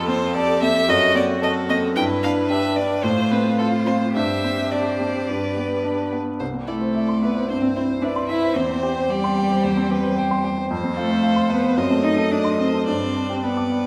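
Stormy and dramatic, this quick classical-period movement for piano quartet moves at 110 BPM in 4/4 and C major, its beats uneven and pushed and pulled with rubato. A focused violin carries the melody from G4 to G5 with vibrato, while a second violin, rich and smooth, holds an even inner line between A4 and D#5, sitting lower in the mix than the other strings. The cello adds its own second line from G3 to G4, clear and even with light vibrato. Up front, the baby grand piano supplies the accompaniment across a broad span from C2 to D6, intimate and natural, with long sustain and audible action noise. The harmony circles through F, F#dim and G before settling onto C in the second section at 6.4 seconds, then climbs through F and F#dim7 back to G. A wet recital hall reverb surrounds the ensemble in this passage cut from a longer piece.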